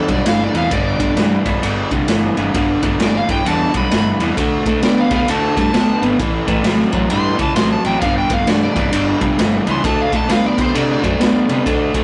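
A swung eighth-note feel drives this gritty, raunchy blues rock and southern rock power trio passage: a raw garage drum kit of punchy kick, medium-tuned snare and dark ride cymbal pumps up front in a small room; a double-tracked, overdriven electric guitar picks a low riff over G5, D5 and A5 chords; a round, fuzz-soaked fingered bass sits darkly underneath; and an overdriven slide guitar carries the melody high above, all in a rough rehearsal-room recording with light reverb, warm saturation and a dulled top end.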